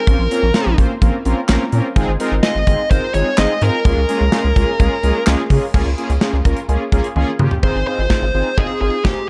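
Synth-pop excerpt with a nostalgic, wistful mood, where a dark, distorted high-gain lead guitar carries the melody over fat, brassy analog synth brass chords treated with chorus. A rubbery, hollow square bass sits up front beside a polished modern studio drum kit with tight kick, handclaps, hi-hat, crash and toms, and a drum fill at 7.2 seconds leads into the closing section at 7.6 seconds. The production is dark and warm with light reverb, and the chords move from Bbmadd9 through Ab6 and Db6 before returning to Ab6.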